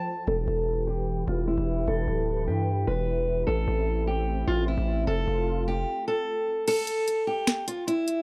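A dry, gritty hardware recording with a faint mains hum frames this dark, hard-hitting half-time trap piece, where a fingerpicked steel-string acoustic guitar carries the melody through a low-pass filter and analog delay over a smooth, detuned sawtooth pad with chorus. A heavy, aggressive distorted 808-style bass with a noise layer enters at 0.3 seconds beneath Em, Am and F chords, and at 6.7 seconds the pad stops as a tape-warm trap drum kit comes in with a sharp snare, bright hats, finger snaps and a crash while the kick is muted.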